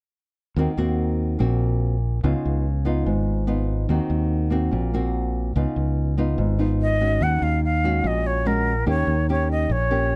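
A dry, dark, close-up sound frames this smooth, melancholic bossa nova fragment, cut from a longer piece. From 0.6 seconds a small, fingerpicked nylon-string guitar carries the chords, moving between minor sixth and ninth colours, while a direct, warm fingered electric bass anchors the low end. At 6.8 seconds an airy jazz flute enters up front with vibrato and a soft attack, singing an expressive melody as the harmony shifts toward a dominant seventh near the close.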